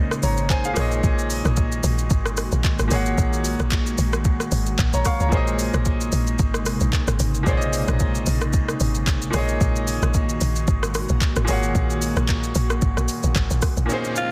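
A tight, punchy log drum bass with a fast attack and mellow decay drives this late-night, deep amapiano excerpt, joined by a smooth, up-front R&B drum kit whose soft kick, crisp hats, handclaps, rim clicks and shaker carry a touch of overdrive and a light 16th-note swing. A clear, vintage-toned concert grand piano accompanies, while an ethereal, airy pad, chorused, reverberant and pumping in the background, holds sustained chords, as the harmony moves between Bbm11 and Gb69. A background downlifter enters at 13.9 seconds, and a raspy, gritty alto saxophone cuts in up front on a single F4 at 14.2 seconds, all within a dense, heavily limited modern master.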